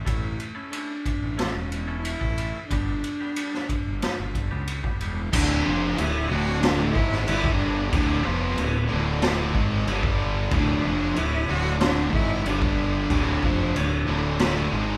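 A smooth bowed cello carries the melody with vibrato through this cathartic, anthemic quiet-loud alternative rock excerpt, first over clean, twangy electric guitar arpeggios, a dark, round fuzz fingered bass and a gritty, boomy garage drum kit up front, until the arpeggios stop at 5.2 seconds and three bright distorted guitars, two thick fuzz parts and a tight double-tracked one, come in behind at 5.3 seconds with a riff over D5 and G5 power chords, the band playing live together in one room with light reverb.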